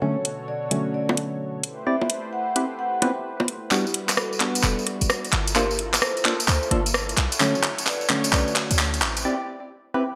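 Late-night and soulful, this two-step UK garage cut moves at 130 BPM in E minor with a swung 4/4 feel. A mellow vibraphone melody with delay floats over a smooth, detuned sawtooth pad with chorus and tremolo, while hollow, wave-folded organ stabs with chorus and delay sit up front beside a layered electronic drum kit of bongos, handclaps, metallic hats and rim clicks, filter-swept at the start and treated with gated reverb. A jingly vintage tambourine joins at 3.7 seconds as the build-up and drum fill begin, a punchy, tight 808-style bass enters at 4.6 seconds, and a break arrives at 9.2 seconds, all framed in a bright 1980s-style digital production with plate reverb.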